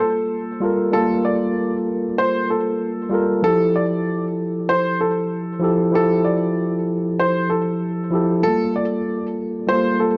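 A small room with light reverb frames this soulful hip hop excerpt at 96 BPM in F major, its sixteenths swung at 60%. A woody, slightly detuned upright piano carries the melody up front throughout, while a mellow tine electric piano, worn and a little out of tune with a cassette tape colour, plays clean, direct accompaniment alongside it. The harmony moves from Gm9 to Fmaj9 at 3.4 seconds and back to Gm9 at 8.4 seconds.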